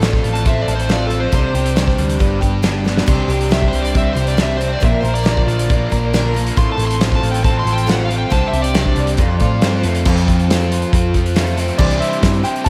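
Folk rock with a heartland rock drive, this nostalgic, jangly passage moves at 137 BPM in a straight 4/4, cut from a longer piece. A bright, shimmering twelve-string acoustic guitar sits in the background, its octave-doubled picking carrying audible finger squeak, while a mellow, reedy electric piano adds very quiet, clean accompaniment through its built-in speakers. A biting, double-tracked overdriven guitar drives the riff with spring reverb and slapback echo, over a dark, round hollow-body bass and a loose, up-front drum kit with dark cymbals and a tight kick. An overdriven slide guitar takes a solo from the start until about 9.9 seconds, and there's a short electric piano fill and a drum fill near 2.9 seconds along the way. The chords move through F/A, Csus2, G and Bb before a clear grand piano melody with long sustain enters at 11.8 seconds over a Cadd9, all wrapped in a lush hall reverb that gives a big arena sound.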